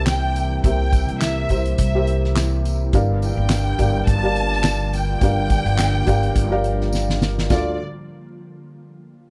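Opening on a felt-muted upright piano, a lush bowed violin section with portamento and a woody pizzicato upright bass, this bittersweet yet driving piano-led pop cut at 105 BPM swings lightly in 4/4 over C7 and Gm7, with an ethereal detuned pad shimmering through ensemble chorus in the background, a soft-mallet drum kit with fat snare, punchy kick and dark cymbals adding handclaps and a fill at 6.9 seconds, and a jingly tambourine far behind, all in a dry, close 1970s-style studio sound.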